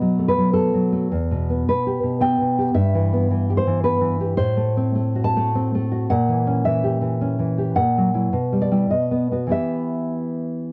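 A home cassette recording with light reverb captures a melancholic, passionate romantic piece for solo nylon-string guitar in E minor, moving in a rubato 3/4 at roughly 95-112 BPM. The guitar sits up front with a dark, full-bodied, deep classical tone, thumb-plucked and ranging from E2 to A5 across a brief 10.7-second passage cut from a longer work. Its harmony travels from B7 through Em, diminished chords and F#7/A#, then passes through Em/B and B before arriving home on Em at 9.5 seconds.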